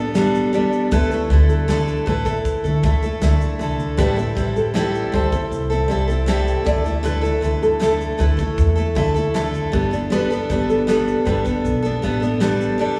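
A wet church reverb surrounds this tender, wistful acoustic pop excerpt at 78 BPM in 4/4, where a bright, jumbo steel-string acoustic guitar picks its accompaniment up front, a fingerpicked nylon-string guitar sits in the background with warm, deep classical arpeggios, a woody, thumpy pizzicato upright bass holds the low end, and a modern studio kit adds a tight kick, medium-tuned snare and shaker, all moving through Gadd9, Dsus2 and Am7 chords.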